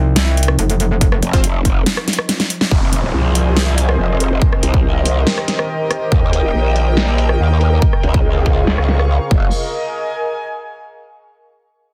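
Heavy wobble dubstep with a menacing half-time feel opens on a metallic, overdriven wobble bass that gives way at 1.2 seconds to a growling, formant-filtered growl bass, under a lush phaser-washed unison pad, a punchy electronic kick and a tape-warm drum kit with a huge snare and filtered metallic hats, while a very quiet supersaw stab flickers, a drum fill closes out the break, and from 2.7 seconds a background downlifter and an airy, breathy ring-modulated pad join as the drums are swept by a filter.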